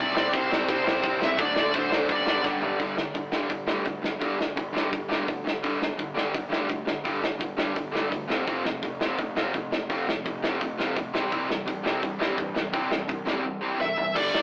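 Rowdy and rebellious, this short cut of punk rock charges along at 169 BPM in a straight 4/4, opening on a quick run through C, D and G before settling onto a G5 power chord at 2.8 seconds and later moving to F and back to C. A bright, biting lead guitar with overdrive and tape echo states a short melody up front in the opening seconds and returns briefly at 13.8 seconds. Beneath it, a cranked stack guitar drives a bright overdriven riff up front, while a second biting overdriven guitar with a warmer tone pushes its own riff from the background. A fuzz-soaked, growly electric bass fills the low end from further back, and a loose acoustic drum kit with a punchy kick and medium-tuned snare pounds away in a small, pumping room, kicking in at 0.2 seconds and throwing in fills at 2.4 and 13.8 seconds. The whole take sits in a moderate stone-room reverb with a rough rehearsal-room feel, saturated and squeezed into a lo-fi AM radio character.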